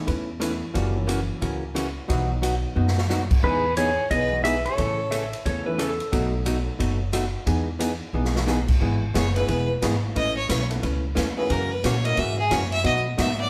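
A live-in-one-room sound fills this short cut, with the full band wrapped in a moderate large studio reverb that gives it an airy, polished sheen. It's a playful, cheerful slice of western swing country in a bouncing four, carried by a pizzicato upright bass with a woody, thumpy tone and a big-band drum kit with dark cymbals, a medium-tuned snare and a punchy kick, plus fills along the way. A hollow-body archtop guitar, picked, compressed and dark, plays the changes while a worn, slightly detuned upright piano rings with long sustain in the background. Up front, a fingerpicked pedal steel guitar with volume swells and slide takes the melody alongside a close, earthy fiddle with light vibrato, and a darker lap steel follows briefly with its own slide line. From 8.8 seconds the bowed fiddle steps forward for a solo that carries through to the end at 13.5 seconds.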